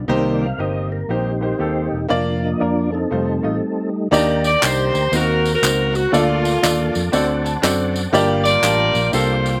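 A clear, up-front saxophone section carries the melody from 4.5 seconds in this jubilant, soulful uptempo gospel excerpt in Bb major, swinging at 120 BPM over a smooth tonewheel organ with slow rotary speaker, chorus vibrato and key click, which takes a solo in the opening seconds before a stop at 3.6 seconds. Punchy, amped fingered electric bass and a natural, short-sustain baby grand piano drive the accompaniment, with the piano adding a fill at 7.1 seconds, while a very quiet, dark French horn section holds sustained chords only through the first few seconds. Tambourine, egg shaker and group handclaps join at 4.1 seconds, all heard close and dry in an open-air setting with little reverb.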